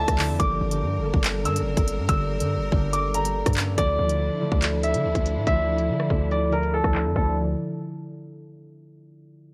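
Menacing and cold, this drill excerpt moves at 142 BPM in a half-time 4/4 feel, set in D harmonic minor and tuned slightly flat of standard pitch. A bright, woody upright piano carries the melody up front with long sustain, softened by a low-pass filter and trailed by digital delay, while a fingerpicked concert harp rings beneath it in accompaniment, also filtered. A studio string section holds smooth, bowed chords with vibrato further back in the mix, moving from Gm to Dmadd9 at 3.8 seconds. The hard-hitting 808-style bass is punchy and saturated, with a fast attack and a noise layer over its sine tone, decaying into the low end. The electronic drill kit sits up front with a hard-clipped kick, crisp hi-hats, handclaps, rim clicks and crash cymbal, entering at 0.1 seconds and stopping at 7.3 seconds, and the whole mix stays dry and darkened by a low-pass filter.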